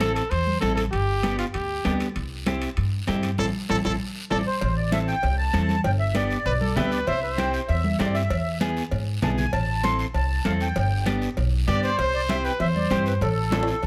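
A straight 4/4 cumbia groove at 195 BPM opens this fiery, danceable passage in A minor, cut from a longer piece. Hard-hand congas with a thick skin sit in a small room beside a raspy, dry guiro, while ringing metal-shell timbales and cowbell stay in the background, and a woody, dark pizzicato upright bass holds the bottom up front. A slightly broken-up, compressed electric guitar with spring reverb picks the accompaniment throughout. A bright, punchy trumpet with vibrato and scooped notes takes the solo at the start, capped by a band accent and a drum fill, then returns in short phrases as a second line. At 4.3 seconds a reedy, sweet accordion with light tremolo tuning and plate reverb takes over the melody. The close, detailed sound carries the chords through Am, G, C and a pass through E before landing back on Am.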